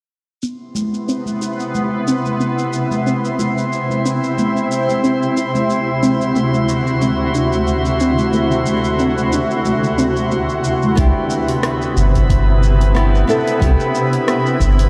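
A shimmering ambient pad sits up front in this smooth, relaxed sunset chillout excerpt in C major, holding sustained chords that move from Cmaj7 to D9 at 5.7 seconds and back to Cmaj7 at 11.0 seconds, its slow attack and octave-up sparkle wrapped in chorus and built-in reverb. At 91 BPM with a light swing on the sixteenths, a soft, round pluck plays gentle arpeggios in the background with lush chorus, tape echo and a filter sweep, while a deep house kit of hi-hat, rim click and shaker ticks along and high-tuned congas with a thin, bright skin sound distant and soft-handed. A drifting glass-harmonics texture floats high above, calm and glassy with slow-blooming overtones. The pluck fades out at 10.6 seconds, and at 11.0 seconds the congas give way as a fingerpicked nylon-string guitar enters with tape echo, joined by a deep, round sine sub bass placed up front and an electronic kick sitting in the background. 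The whole mix is dreamy and soaked in a cathedral-like reverb that lets every note linger.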